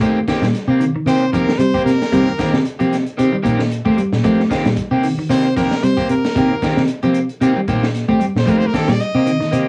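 A brilliant, punchy trumpet takes the solo from 1.1 seconds, its close-miked, forceful vibrato riding over a hypnotic, funky afrobeat groove in C dorian at 113 BPM with a light swing on a single Cm7 chord. Underneath, a round, foam-muted fingered bass sits up front, a dark, clean guitar plays fingered arpeggios, and a slightly broken-up second guitar with subtle chorus punctuates with picked stabs. A crunchy breakbeat kit with a high-tuned snare, tight kick and rolled-off top adds gritty, saturated drive, and the cassette tape on the guitars, drums and trumpet lends this home-recorded excerpt, cut from a longer piece, a lo-fi haze in a light reverb.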